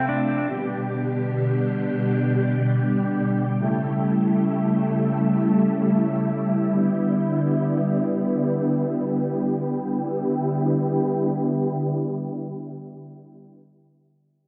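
Hazy and ethereal, this dream pop passage in E dorian floats in free time, cut from a longer piece. A dark, clean electric guitar offers a brief fingered arpeggio on D4 with chorus and tape echo for only the first 0.5 s. From the very start, an up-front, organ-like ensemble string part carries soft-attack, vintage sustained chords through G, A7 and Em7 until 13.5 s, under a filter sweep that runs to 9.8 s and a wet plate reverb in an echo-heavy mix.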